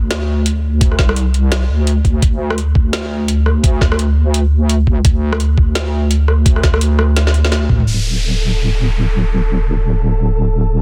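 This dark, cinematic half-time drum and bass excerpt opens with a deep, soft wobble bass, a saturated square-and-sine tone with chorus sitting up front, joined almost at once by an electronic drum kit of metallic, filtered hi-hats, rim clicks, toms and a woody, softly clipped snare re-recorded in a small room. At 170 BPM with a swung sixteenth-note feel, a pitched-down, gritty electronic kick enters at 0.8 seconds, thumpy and tape-warm in the foreground. A drum fill closes the opening stretch before the kick and kit drop out just before and at 7.9 seconds, where a downlifter sweeps in and the music settles on a D5 chord. Moments later a flickering, granular texture of detuned triangle tones fades in slowly on A4, carrying its own reverb above the sustained bass. The mix is dry, dense and heavily limited.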